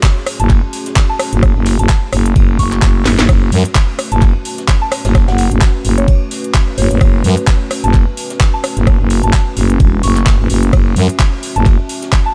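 A knocking, up-front electronic kick, a garage kit of cracking snare, handclaps and metallic hats, a very quiet brushed acoustic kit with dark ride cymbal, and a moody, detuned analog pad pumping behind them open this swaggering, bouncy bass house excerpt at 129 BPM in F# minor with a 16th-note swing, before a growling, thick FM bass with tube saturation and a soft, mellow synth bell treated with chorus, phaser and digital delay join at 0.4 seconds, and a drum fill at 3.1 seconds marks the way through a tape-tinged small-room sound that holds on a single F# minor chord.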